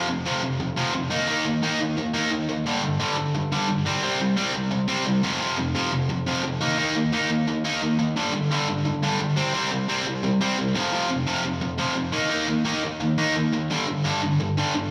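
Heard through a venue's PA with light club reverb, this live punk clip, cut from a longer piece, feels rebellious and upbeat in a straight 4/4. A lone distorted electric guitar sits up front from 0.0 to 14.9 seconds, bright, picked and double-tracked, its overdrive colored by slapback echo and digital delay as it spans F2 to Eb4. It cycles through the power chords F5, Eb5, G5 and C5 again and again.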